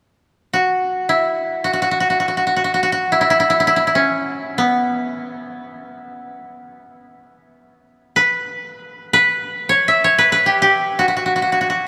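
Unmeasured and in free time, this Japanese traditional fragment drifts rather than pulses, giving it a still, solitary mood. A lone koto carries the melody, entering at 0.5 s and sounding until the close at 11.9 s. It draws on an E kumoi scale across a range from B3 to E5. Played with fingerpicks, the instrument has a woody, dry attack and sits up front in the mix. Around it, a moderate cathedral reverb with a long 6.4-second decay opens a large, resonant space that lets each note hang in the air. Taken from a longer piece, it is a brief, meditative moment of solo string playing.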